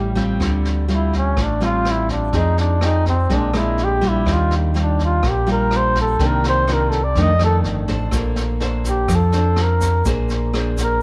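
Set in a small room with light reverb, this wistful, intimate bossa nova excerpt at 124 BPM in D minor features an up-front flugelhorn solo with soft attack, vibrato and scooped notes over fingerpicked nylon-string guitar with audible finger squeak, a dark, round fingered electric bass, a distant, roomy brush kit with a high-tuned snare and boomy kick, and a grainy egg shaker that joins in the background at 8.1 seconds.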